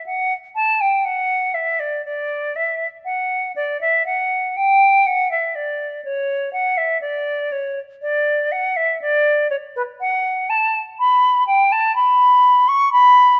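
A classical, baroque-style fantasia for unaccompanied silver concert flute in D major, flowing and dance-like at a rubato 61 BPM in 4/4 and tuned to A4 = 441 Hz, presents a pure, expressive solo line with vibrato and tongued notes ranging from B4 to C#6, sitting up front in a close, detailed recording with light reverb across this 13.4-second passage cut from a longer piece.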